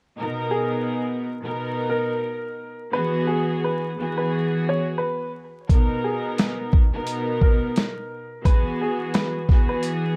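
A light reverb and a bed of vinyl crackle frame this short, nostalgic boom-bap hip-hop excerpt, which sits at 87 BPM in B major with a swung sixteenth-note feel, its chords moving between Bmaj7 and Eadd9. An up-front studio string section carries the accompaniment from 0.2 seconds, bowed with light vibrato and a reedy, gut-string, period-style tone softened by cassette tape, while a woody, slightly detuned upright piano with long sustain sings a smooth melody in a narrow upper range. At 5.7 seconds a compressed, pitched-down sampler drum kit arrives with a thumpy kick, a medium-tuned snare and hi-hat, its gritty 12-bit texture placed up front.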